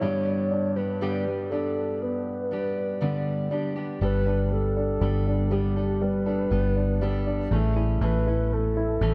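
A light reverb gives this tender, emotional pop passage a gentle sense of space, cut from a longer piece at a slow 60 BPM in a straight 4/4. A hollow, woody synth lead with a soft attack carries the melody in sustained, vibrato-touched tones, its sound thickened by chorus. Beneath it, a warm baby grand piano sits up front with a natural tone, while a dark, full-bodied jumbo steel-string acoustic guitar plays fingerpicked arpeggios. At 4.0 seconds a vintage foam-muted electric bass enters, round and punchy, adding a low, amped weight as the harmony moves from G to Gadd9. An Amaj7 chord arrives at 7.5 seconds for the closing moments.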